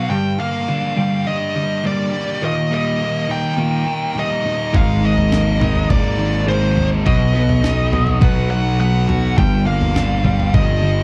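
A straight 4/4 pulse at 104 BPM carries this wistful, jangly indie rock piece, cut from a longer work, where a biting lead guitar with overdrive and slapback echo plays a high melody over a warm overdriven guitar riff and a bright, twangy twelve-string electric guitar steeped in lush chorus and slapback echo, until at 4.7 s a growly, punchy fuzz bass and a gritty, compressed sampler-style breakbeat kit with a thumpy kick, high-tuned snare and toms join over chords of Gm7, Eb, Absus2 and B, all captured in a dry, close 1970s-style studio sound.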